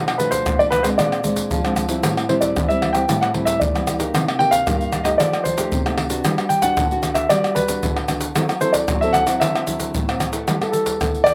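A fingerpicked nylon-string guitar opens at 0.0 s with a classical touch and finger squeak, laying down a quiet accompaniment. An instant later the percussion of egg shaker, pandeiro, tamborim and a tight surdo sits up front, its sound compressed and saturated. At 0.2 s a warm grand piano with short sustain and a slapback echo takes the melody, placed above the other parts in the mix. This is a sunny, joyful samba and choro passage in a straight 4/4 at 114 BPM, cut from a longer piece. The harmony moves through rich chords such as Bm7b5, Am7, F9 and Gmaj7 before resting on G69 at 10.5 s. The sound is dry and open-air, with little reverb.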